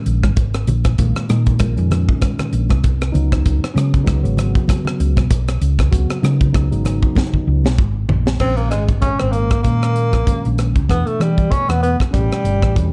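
Slick and intense, this electric jazz fusion excerpt moves at 97 BPM in 4/4 with a swung sixteenth feel. It opens on a mellow, clean tine electric piano through a phaser over Bbm9 and Dbsus2, with a round, dark hollow-body fingered bass sitting up front, a crisp, polished drum kit with a high-tuned snare and tight kick, and very quiet, damped congas played with soft hands. A drum fill at 7.2 s leads into a new passage at 8.4 s, where the congas stop and a warm tenor saxophone with vibrato, subtone, scooped notes and slapback echo takes the melody from a distant, roomy place, shadowed by a very quiet, breathy trombone on a second line as the chords move through Bbm7, E5 and A9 in a dark, small-room production.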